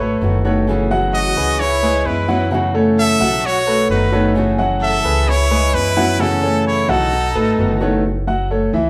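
Heard in a lively large studio with a roomy reverb, this brief, sunny Latin cut moves at 130 BPM in a straight 4/4, cycling through B7, F#m7 and C#m7 as the band plays together live. Up front, a brilliant, punchy trumpet carries the melody with vibrato and forceful pop-style attack, while a clear, intimate concert grand adds arpeggios with deep bass, long sustain and audible action noise. Beneath them, a woody, growly pizzicato upright bass anchors the groove, a full-bodied fingerpicked nylon-string guitar supplies accompaniment, and a rich, earthy chamber violin section enters at 1.1 seconds with a distant bowed second line.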